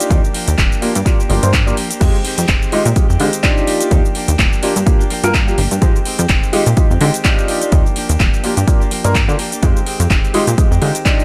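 A swung 4/4 groove at 126 BPM drives this short, groovy and sensual slice of filtered disco house in F dorian, with the kick and the sidechain pumping on the other parts giving it a steady breathing motion. The punchy, tape-warm electronic kick sits up front with a touch of studio reverb, while the house kit adds metallic hi-hats, handclaps, shaker and crash cymbal, its hats, cymbals and percussion pumping against the kick. A plucky analog bass with a fast attack and decaying sawtooth-and-square tone plays a funky low line under a low-pass filter. A clear grand piano carries the accompaniment through Ebmaj9, Gm7 and Fm9, colored by phaser and a low-pass filter. Further back, a clean, picked electric guitar recorded direct plays a compressed riff with vintage 12-bit sampler grit, and the overall sound stays dry.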